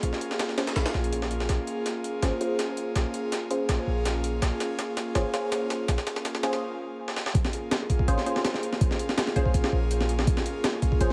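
Nostalgic and atmospheric, this drum and bass excerpt in a jungle style pairs an airy, breathy pad, thickened with chorus, with a dark, muted dub chord stab colored by phaser, cassette-tape grit and dub echo. A deep, boomy 808-style bass and a compressed, pitched-up breakbeat kit with a thumpy kick sit up front. A build-up with a filter sweep on the stab and a drum fill gives way to a brief break at 6.6 seconds before the drop lands at 7.3 seconds, all wrapped in light reverb, digital ambience and vinyl crackle.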